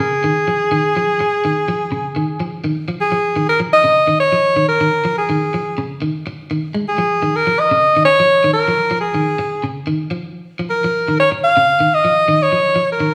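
A slightly swung sixteenth-note afrobeat groove in 4/4 carries this defiant, funky excerpt, where a clear, up-front alto saxophone sings a pop-style solo melody with vibrato over a rootless Bb minor seventh, while a picked, slightly broken-up electric guitar plays arpeggios low in the mix, the band captured live together in a wet stone room.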